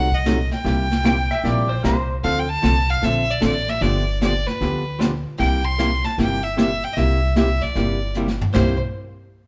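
Playful and down-home, this short western swing cut from a longer piece moves at 152 BPM in 4/4 with a swung feel on the eighth notes, set in C mixolydian. A clear, biting fiddle carries the melody up front with a light vibrato, while a clean, hollow-body archtop guitar, picked and amplified, supplies the accompaniment. Underneath, a woody, thumpy upright bass with steel strings sits close to the listener, and a jazz kit played with brushes adds a dark, smooth pulse with a boomy kick and a medium-tuned snare. A twangy pedal steel guitar, fingerpicked and compressed with slide and volume swells, appears briefly as a second line from 1.1 to 2.2 seconds and again at the very end. The harmony moves from F#dim7 through C7, Dm7 and G7 before returning to C7, a drum fill arrives at 8.2 seconds, and the whole band sounds like it is playing live together in a stone room with moderate reverb.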